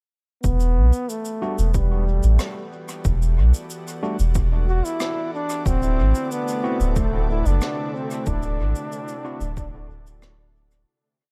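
Deep and spacious, this short, complete ambient dub piece settles into a steady groove that moves from Em11 to D9 at 5.7 seconds. A round, mellow sub bass sits up front with a dub-style line, while a soft electronic kick with overdrive pulses in the background and sparse cabasa and rim clicks with dub echo fill out the beat. An airy pad fades in, holding detuned, chorused chords that shift slowly. Over this, a warm trombone with vibrato and a soft attack plays a solo melody of short call phrases carried on dub echo, and a barky, gritty tine electric piano adds sparse, echoing chord stabs in the background. At 6.5 seconds, a breathy, wind-like tuned noise texture with its own reverb enters on a held high note, and the whole piece fades out from 7.4 seconds inside a small room ambience.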